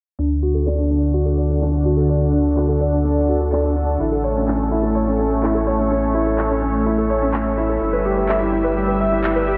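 Cinematic and intimate, this excerpt of piano and strings electronica moves at 126 BPM in 4/4, bathed in a dreamy, low-passed mix with a huge ambient reverb tail of 7.5 seconds. A soft, mellow, felt-muted upright piano sits up front playing a riff through a filter sweep and diffuse ambient delay, over a lush, detuned sawtooth pad holding bright, warbling sustained chords with chorus, and a deep, round sine sub bass, as the harmony moves from D to A to Em/G. Very quiet, tape-tinged electronic handclaps enter at 0.7 seconds, sounding as if re-recorded in a large room.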